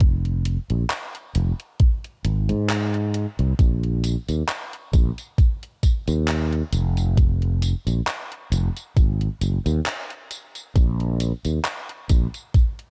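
A lightly swung 4/4 groove at 67 BPM anchors this hazy, melancholic vaporwave excerpt, where a thumpy, tape-colored electronic kick sits up front in studio reverb, a gated 80s digital drum machine adds handclaps, hi-hat and tambourine further back in gated and studio reverb, and a growly, tube-saturated fretless electric bass sustains low notes between F1 and Ab2, all within a digital ambience, until the bass drops out at 12.3 seconds just before the drums finish.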